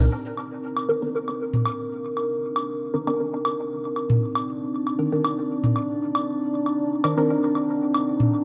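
A hazy, nocturnal dub techno excerpt at 117 BPM in C minor, set in a moderately lush hall reverb, where a dark, detuned analog pad with a wave-folded, sub-octave depth holds a sustained Cm9 chord through lush chorus. Muted, nasal sawtooth chord stabs with a filter pluck, fast attack and moving notch sit up front under phaser and dub echo until 7.3 s. Electronic toms and woodblock, analog in character and re-recorded in a small room, add percussion treated with dub echo.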